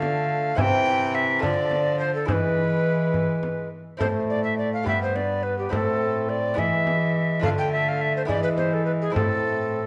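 Courtly and solemn, this renaissance-style consort dance moves in a steady 6/8 and is cut from a longer piece. A tenor recorder carries the melody up front, its airy, wooden straight tone marked by a tongued chiff. Beneath it, a fingerpicked lute adds bright, delicate accompaniment on double gut strings, some of them octave-doubled. A bassoon supplies a second accompanying line with a soft attack, light vibrato and a vintage colour. The bowed cello anchors the bass with a rich, nasal, reedy gut-string tone in period style, and a frame drum keeps the dance pulse until about 9.4 seconds. All five parts sound together from the start, set in a moderate recital-hall reverb.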